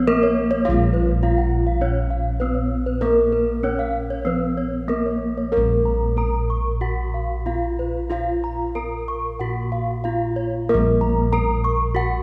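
In a straight 4/4 pulse moving between 93 and 104 BPM, this shimmering, brilliant Balinese gamelan fragment in Bb pelog, cut from a longer piece, shifts into a new section at 5.5 seconds. A bronze metallophone struck with a horn mallet carries the melody with a ringing, boxy closeness, while a second metallophone played with a wooden mallet spins dry, close-miked arpeggios higher up, both tuned in pairs so their notes pulse with shimmering beats. Beneath them, bossed gongs give a round, airy bass with a beating bronze glow, and the whole ensemble sits in the long, wet reverb of a church.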